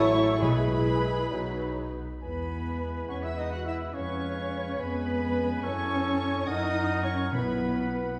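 In a 6/8 at 66-72 dotted-quarter beats per minute, taken with a touch of rubato, this spirited, cheerful classical-period movement for symphony orchestra unfolds in E major as a short cut from a longer piece. A distant, bowed violin section carries the high melody with even vibrato, while a second, close and expressive violin section, an airy, very quiet silver flute, a present clarinet and an oboe with light vibrato weave the second lines beneath it. A rich viola section, smooth and bowed, fills the middle alongside a tight French horn section holding sustained chords, and a punchy, roomy trumpet adds distant stabs. A mellow bassoon plays in the accompaniment from the start until 1.9 s. The double basses sit close and full in the bass, with the cello section adding soft-attacked, portamento-tinged phrasing, and round calf-head timpani struck with soft mallets sound at 0.4 s and again at 7.3 s. 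The harmony travels from E/B through C#7/E# and F#m7 to a closing Bsus4, all heard from further back in a scoring stage with generous reverb.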